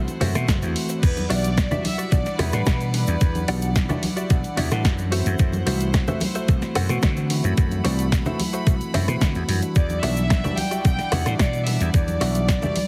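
A rich, reedy chamber violin section opens this groovy, sleek nu-disco excerpt with a light-vibrato melody carrying delay, over a bell-like tine electric piano with vintage sampler grit and a bright, earthy string section holding sustained chords that pump against the kick. A growly, amped slap bass sits up front, also pumping, while a house kit with a punchy snare and warm, tape-warm hats joins almost at once alongside bongos, congas and a tube shaker played with soft hands. A clean, picked electric guitar recorded direct adds a compressed riff coloured by analog chorus, and a thumpy, sampler-style electronic kick arrives at 0.5 seconds as the strongest element in the mix. The harmony moves between half-diminished and minor ninth chords, and after dropping out the violins return at 9.8 seconds. The whole excerpt has a heavily compressed, radio-like sheen.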